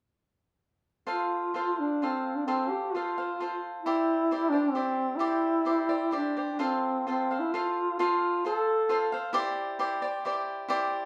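A mellow, distant duduk sings a festive yet romantic melody with vibrato and scooped notes over crisp, picked acoustic cavaquinho from 1.1 seconds in this rubato Mexican folk mariachi fragment in 3/4 at 131 BPM in F major, moving between F and Cadd9 with the live band sound of one room bathed in wet, large studio reverb, until the duduk drops out at 9.1 seconds and the cavaquinho carries on alone to 11.1 seconds.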